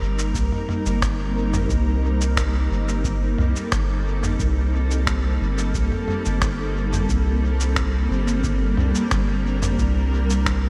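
A granular cloud pad sits up front in this meditative, spacious ambient dub excerpt, its blurred, evolving sine tone rising on a slow attack and holding a single Cm7 chord with a long release and built-in reverb. Beneath it, a soft dub sub bass, round and deep with a triangle and square wave character, sustains low notes from the first moment, also placed up front. At 89 BPM in a straight 4/4 in C dorian, a lo-fi sampler-style kit of finger snaps, shaker and toms enters at 0.2 seconds, sounding pitched down, muffled and compressed, pushed through overdrive and dub echo. An electronic kick drum follows at 0.3 seconds, a tape-tinged analog thump recorded in a large room and kept in the background. Light digital ambience surrounds the mix, lending the short, unchanging passage a hazy, drifting calm.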